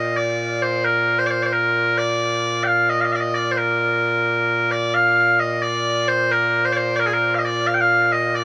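In a 6/8 with a straight feel, this short, proud and stirring cut of Scottish traditional pipe music features solo bagpipes, bright and piercing, sounding continuously up front from start to finish. The same opening phrase returns at 4.9 seconds, carrying the melody through a span from Bb2 up to G5. A huge ambient reverb with a long tail surrounds the pipes, set within a dark, warm production.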